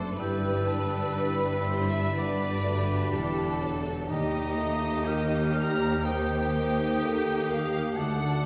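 A full orchestra sounds at once in this tender classical passage, cut from a longer piece, with a distant, lush violin section carrying the expressive vibrato melody in the background while a second, close violin section plays a smooth, even line above it. High above, a concert flute adds a pure, soft-attack counterline alongside a roomy solo oboe in a warm classical style. Beneath them, a mellow bassoon with light vibrato, a rich viola section and a French horn section holding sustained chords fill out the middle, all set back in the mix. A focused cello section and a bowed double bass section, the most prominent part, anchor the low end, while a very quiet fingerpicked harp rings out arpeggios. The rubato phrasing lets the harmony move gently from G to Eb at 4.1 seconds, all bathed in the reverb of a recital hall across its 8.5 seconds.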